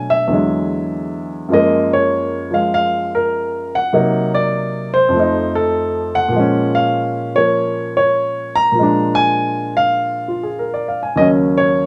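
A warm, up-front grand piano carries this moody, swinging solo jazz passage at 99 BPM in 4/4, its eighth notes swung and its range spanning Eb2 to Bb5 across the roughly 11.9-second fragment of a longer piece. The harmony moves through rich extended chords, from E9 and Gbmaj9 through Cm7b5, F7, Bbm7 and Bb7 before settling toward Ebm7 at 11.2 seconds. A moderate studio reverb gives the live-in-the-room sound a gentle sense of space.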